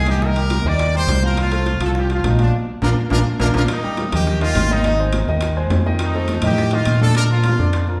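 Recorded live in one room with a wet, large studio reverb, this joyful, danceable salsa excerpt in Eb major races along at 208 BPM: a brilliant, punchy horn section carries the melody over a clear grand piano with audible action noise and long sustain, a bright fingered electric bass sits up front, ringing high-tuned congas and metal-shell timbales stay in the background, round low-tuned bongos are very quiet, and a drum fill with a band accent lands between 2.5 and 3.7 seconds.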